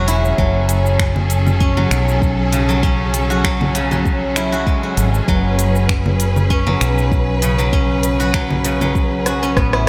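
A lush hall reverb gives this short organic downtempo cut a big arena sound, its warm, meditative mood settling on F# minor at 98 BPM with a light swing. A silvery, fingerpicked steel-string zither rings out arpeggios through tape and slapback echo, over a round, dark fretless electric bass and clear, bowed string chords with vibrato, both pumping against a deep electronic kick. A deep house kit adds congas, finger snaps, smooth hi-hat, rim click and shaker, a very quiet metallic singing bowl hums with slow beating, and a drum fill closes things at 9.3 seconds.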